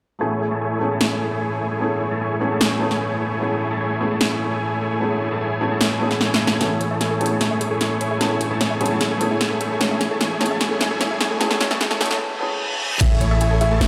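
A huge, detuned supersaw riff with cassette-tape coloring and a filter sweep leads this bright, playful future bass piece at 150 BPM in a half-time feel in A major, over a muted felt piano with audible action noise and a big-room dance kit with punchy snare and metallic hats; from 6.6 seconds a gentle pluck arpeggio and a deep, boomy 808-style bass join as the build-up grows with very quiet risers and a reverse cymbal into a break at 12.2 seconds, and at 13.0 seconds a round octave-layered synth lead with 12-bit grit and a knocking electronic kick arrive, the whole heard in a large, reverberant studio space.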